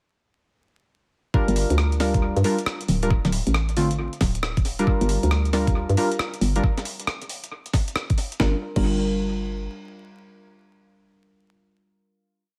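A skipping two-step garage groove at 136 BPM, swung on the sixteenths, drives this moody, late-night UK garage piece in G minor, led by an overdriven, up-front electronic kick and a gritty, pitched-up breakbeat sampler kit of swung hats, rims, snares and crash touched with analog delay. A hollow, bouncy FM bass plays a syncopated line beneath deep, detuned chord stabs that move one shape in parallel through Gm7 and Dm7, coloured by chorus and analog delay. The drums and bass are gone by 9.7 s, leaving the dark, decaying stab to close on a final Gm7 that rings out until 12.5 s, within an echo-heavy mix laced with vinyl crackle.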